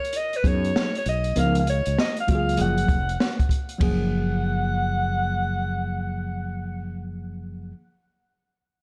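A breathy, distant alto saxophone with vibrato and scooped notes opens this cool, mellow jazz-hop excerpt at 98 BPM with a swung 4/4 feel in F# major, over an open jazz drum kit with a boomy kick, high-tuned snare, hi-hat and ride roughened by vintage 12-bit sampler grit. A clean tine electric piano heard through its built-in speakers and a round, punchy fretless bass enter at 0.4 seconds. The drums stop at 4.0 seconds, while the saxophone carries on through an analog delay and plate reverb in a dark, warm mix.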